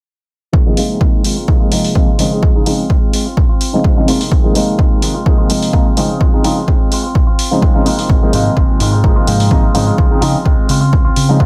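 A dark, mellow baby grand piano with audible action noise, treated with phaser, pumping and a low-pass filter, carries the chords in this sunny, feel-good filtered disco house excerpt at 127 BPM in Ab major, over a punchy, up-front analog kick, small-room hi-hats and a clean, picked envelope-filtered guitar riff under a long filter sweep, with a round fingered bass and a barely audible tube shaker arriving at 8.1 seconds, shortly before the harmony moves from Ab6 to Dbmaj7 at 10 seconds.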